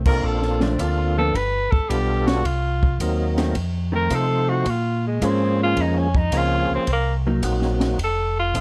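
A swung 4/4 groove at 108 BPM drives this late-night, bluesy soul jazz organ trio excerpt in Bb minor, with a compact cocktail drum kit's high-tuned snare, punchy kick, hi-hat, ride and crash setting a smooth pulse beneath a round, key-clicking tonewheel organ bass line that sits up front through a slow rotary speaker. A warm, vintage tenor saxophone carries the solo with vibrato, soft attacks and scooped notes, joined by a gritty, overdriven second organ whose percussive melody line turns through slow rotary and chorus vibrato, while a dark, compressed hollow-body jazz guitar picks clean accompaniment until 7.4 s. The changes move from Bbmaj7 through G7, Cm7b5 and F7 to Bbm7, all in a dusky production with light reverb.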